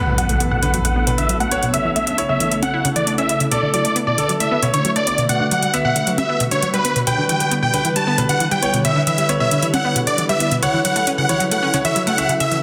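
Drenched in a lush hall reverb and pressed into a dense, heavily limited modern master, this euphoric, uplifting trance passage moves at 135 BPM in a straight 4/4 and is cut from a longer piece. An electronic impact opens it in its first 1.7 seconds, while a huge, detuned supersaw lead carries the melody up front with a bright, compressed edge, shaped by a low-pass filter sweep and delay. Beneath it, a round, warbling analog pluck spins arpeggios through chorus and delay with its own filter sweep, and a brilliant grand piano with vintage 12-bit sampler grit plays a second line alongside a very quiet, punchy unison pluck. Layered electronic hi-hats with a metallic sheen and congas enter at 0.2 seconds, sitting in a small room reverb. The harmony steps from D6 through A, Bm7, Gmaj7 and Em7 before settling on F#m7, keeping the mood soaring and bright.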